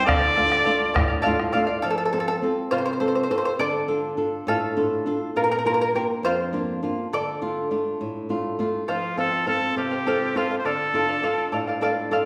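Heard in a reverberant recital hall, this wistful, earthy Andean folk excerpt in D minor moves at a slow 68 BPM in a straight 6/8, cycling through Dm, F and Bb. A nasal, straight-muted trumpet with classical vibrato carries the melody up front, and a round bombo sounds briefly at the start. The shimmering, fingerpicked charango with its doubled strings takes a solo from 1.8 to 8.9 seconds over a warm fingerpicked flamenco guitar, and the trumpet returns at 8.9 seconds.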